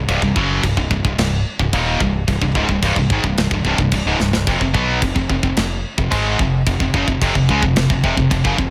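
Heavy metal in C phrygian at 109 BPM with a dark, epic mood, built on an up-front, double-tracked high-gain distorted guitar riff with a bright edge, a punchy fingered electric bass beneath it, and a tight metal drum kit entering at 0.1 s with crash, snare and kick, which plays a drum fill at 4.2 s just before the harmony moves from Cm to F5 at 4.5 s, all in a dry sound.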